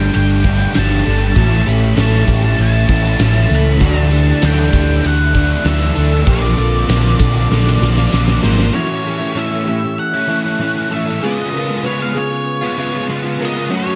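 A straight 4/4 pulse from a gated 80s drum kit with a fat snare, tight kick and bright ride cymbal, a very quiet jingly tambourine and a round, up-front picked bass drives this dreamy, hazy shoegaze and dream pop excerpt, where a dark fuzzed octave lead guitar sings through tape echo over a biting overdriven riff, a compressed direct-recorded clean riff with reverse reverb, a double-tracked bright overdriven guitar in lush chorus and a dark, fingered background arpeggio guitar, until a drum fill at 7.5 seconds ends the rhythm section, bass and double-tracked guitar at 8.7 seconds and leaves the remaining guitars suspended in light reverb.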